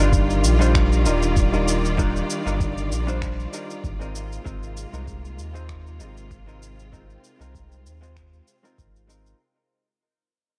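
Smooth and warm, this short sunset chillout excerpt drifts along at 97 BPM with a light sixteenth-note swing, moving from Ebmaj9 to Ab69 at 4.1 seconds as the whole passage fades out. A dark, clean hollow-body jazz guitar with tape echo plays picked accompaniment over clear, bowed string chords with vibrato, while a round, deep analog bass with tube saturation sits up front. A gritty, thumpy electronic kick sits in the background, and sampler-style shaker and finger snaps join it; both carry a tape-warm, small-room character, all set in light digital reverb.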